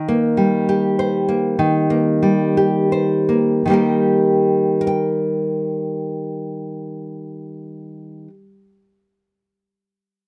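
In a 6/8 with a free, rubato feel, this short excerpt of gentle, pastoral folk drifts at roughly 52-67 BPM in Eb major, easing to a slower pace over its first 3.7 seconds before moving into a new section. A fingerpicked nylon-string guitar plays alone from start to finish at 9.5 seconds, ranging from Eb3 to G5 with a full-bodied, deep classical tone placed up front. Moderate studio reverb gives the instrument a soft sense of space.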